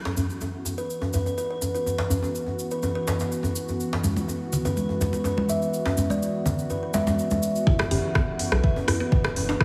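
A smooth, detuned sawtooth pad with chorus and sidechain pumping opens this hypnotic afro house excerpt, joined by a deep, up-front djembe with metal rattles, a grainy cabasa and a woody, ringing kalimba melody trailing dub echo, while hard-hand congas appear at 4.0 s before the drop at 7.7 s brings a round, dark analog bass, a deep, up-front electronic kick, a tape-warm afro-pop kit with hi-hat and rim click, and a mellow FM mallet-like pluck playing background arpeggios, the mix sitting in lush hall reverb with a heavily compressed, radio-style sound.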